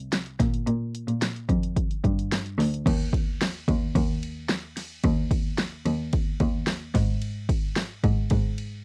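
Hopeful and anthemic, this short pop fragment moves at 110 BPM in a straight 4/4. A single bowed cello carries the bass line from the very start, its rich, focused tone sitting in the low register between C2 and Bb2 with a smooth top and vibrato. An electronic deep house drum kit joins at 0.1 s, layered and produced, with a punchy kick, a fat snare, hi-hat, and both ride and crash cymbals. Both parts sit up front in a dry sound with little reverb, and the whole has the intimate character of a home cassette recording. The music shifts into a new section at 2.9 s, and the cello and drums carry on together until the drums stop at 8.7 s, with the cello sounding until the cut at 8.8 s.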